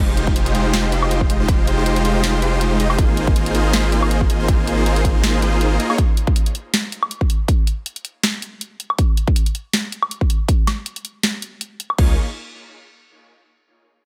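Future bass with a playful, bright mood and a half-time swing, where huge, detuned supersaw chords pump with sidechain and tape echo over a saturated sine sub bass, both dropping out by 6.0 seconds to leave the punchy layered kick and a trap kit of sharp snare, bright hats, crash and woodblock driving up front before chords and bass return briefly at 12.0 seconds in this dry cut from a longer piece.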